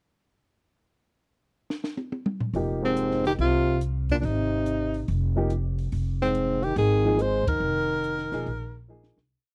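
A breathy, mellow tenor saxophone carries the motif-based melody in this short, spiritual and cool modal jazz piece with a swung feel, shadowed by a clear trombone with light vibrato playing a harmony line mostly in thirds. A compact cocktail drum kit opens with a fill at 1.7 seconds and keeps time on the hi-hat with a high-tuned snare and tight kick, while a woody pizzicato upright bass plays in two and a vintage upright piano, with audible action noise, comps syncopated quartal voicings in the background. The dry, close 1970s-style studio sound keeps the saxophone up front with the trombone present, and a band accent at 7.4 seconds comes just before the fade-out.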